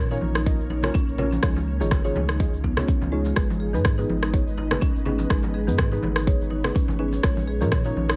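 Afro house at 124 BPM in G# dorian, warm and hypnotic, this short cut from a longer piece swings its 16ths over a chord cycle of A#m, C#add9 and G#m. An overdriven rim click enters at 0.4 s, just ahead of an up-front, layered electronic kick at 0.5 s, while round sine sub bass, dark nasal chord stabs with chorus and delay, and woody, close-miked marimba arpeggios all pump with sidechain. A grainy, close and dry tube shaker ticks along as low-tuned, ringing congas and an ethereal, detuned pad with ensemble chorus, tremolo and built-in reverb sit in the background beneath a studio reverb.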